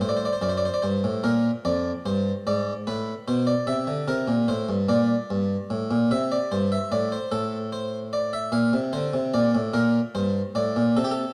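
A straight 6/8 lilt at 49 dotted-quarter beats per minute carries this short excerpt of a baroque-style two-part invention in G minor, joyful yet stately in bearing. A solo French-style harpsichord on a single set of strings sits up front, its plucked tone round and warm as it ranges from F2 to F5 through harmonies such as D7, Gm, G#dim, Amadd11 and Bb before reaching Gsus24. A moderate recital-hall reverb and a dark production wrap the 11.3 seconds in a soft glow.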